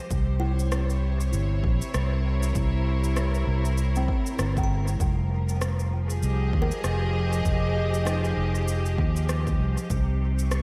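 A punchy, layered electronic kick and an overdriven cabasa and rim click carry a 98 BPM swung groove with a dub echo, while a dark, round fingered electric bass sits up front in this meditative, spacious ambient dub excerpt in F minor. Distant, bright symphonic strings hold intense sustained chords with light vibrato, moving from C7b9 to Fm7 at 5.0 seconds. A woody, ringing kalimba plays arpeggios through an analog delay in the background, all inside a dreamy, lush hall reverb.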